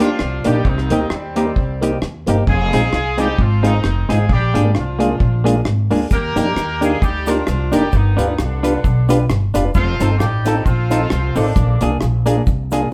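A woody, up-front pizzicato upright bass anchors this joyful, upbeat ska passage, under a tight, clear horn section that carries the melody in octaves with light vibrato and a vintage pop flavour. A clean, compressed semi-hollow electric guitar plays accompaniment while a mellow tonewheel organ adds round stabs through a slow rotary speaker, and a dry, dark reggae drum kit works hi-hat, tight kick and rim click. A very quiet, grainy cabasa joins at 6.1 s, and the band sounds like it is playing live together in one room with moderate studio reverb.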